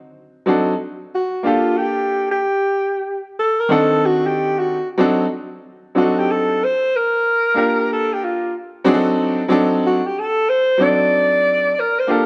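A dark, warm production with moderate reverb from a scoring stage and a touch of small-room ambience frames this nocturnal, smoky hip hop excerpt at 93 BPM, swung on the sixteenths. A bright, woody upright piano with short sustain comps up front from 0.5 seconds over D7b9 and Gm7 changes, while a breathy, mellow alto saxophone enters at 1.1 seconds to take a jazz-style solo, its vibrato and scooped notes carrying a roomy, distant air.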